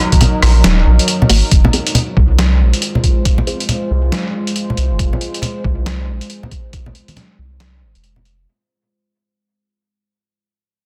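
Heavy and cavernous, this half-time deep dubstep excerpt at 138 BPM in F phrygian opens on a drop over Ebm before shifting to Fm at 1.5 seconds, as a moody, detuned sawtooth pad with slow attack, chorus and its own reverb sustains chords throughout. A gritty, pitched-down sampler-style kick thumps up front beside a tape-warm trip hop kit of hi-hat, rim click and medium-tuned snare, while close acoustic congas carry dub echo and a soft, round sub bass sits deep beneath. From 1.3 to 3.6 seconds a muted, filter-plucked chord stab with phaser, analog chorus and dub echo drifts in the background, all set in a dense, heavily limited mix with light reverb.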